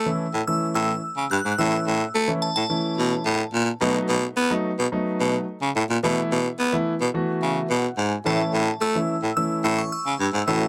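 Dance-pop at 108 BPM in A major with a carefree, summery mood, where a raspy, gritty baritone saxophone carries the bass line up front, close-miked with light vibrato, under a warm grand piano accompaniment that adds a fill from 7.1 to 8.3 seconds, while a glassy, crystalline FM synth bell with chorus, phaser and delay sings the melody from the start and returns at 8.3 seconds, all set in light studio reverb across this brief cut from a longer piece, with chords moving from A through B7 and Esus4/B back to A.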